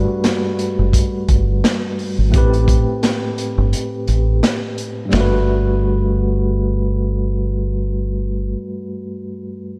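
Boom-bap hip-hop at 86 BPM in G major, nostalgic and confident, with a swung feel where a clean tine electric piano with fast tremolo and cassette-tape colour moves between Gmaj7 and Am7 over a deep, round fingered dub bass, while a crunchy, saturated breakbeat kit with a punchy kick and rolled-off top carries the beat until it drops out at 5.3 seconds, leaving piano and bass in a small, lightly reverberant room in this short cut from a longer piece.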